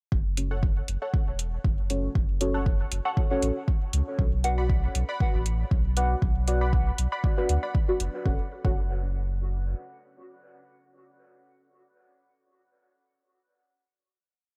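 Dub techno with a cavernous, meditative mood, built on a round sine sub bass that pumps against an overdriven, up-front four-on-the-floor kick, while closed electronic hi-hats with a tape-warm edge tick over a gently swung groove. Sparse echoing chord stabs drift above, one dark, detuned stab with chorus and phaser and a muted, filter-plucked one, each moving a single shape in parallel from F#m to Bm and back through dub echo. The bass drops out at 9.7 seconds and the stabs carry a final F#m chord until 11.8 seconds, hanging in a digital ambience.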